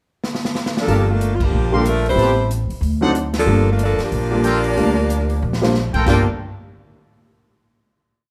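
Heard from further back in a wet club reverb, this short, complete big band swing piece has a sultry, dramatic mood, opening with a drum fill over a pickup bar before the band enters at 0.9 seconds. A tight, up-front saxophone section carries a motif-based melody in four-part block voicing with vibrato and plate reverb, while a distant, roomy trumpet section adds syncopated stabs in drop-2 voicings, and band accents land at 1.4 and 3.3 seconds. An upright bass plays a woody pizzicato two-feel, a baby grand piano comps in rootless voicings, and the airy drum kit keeps time on the hi-hat with a punchy kick until the piece settles on a final chord.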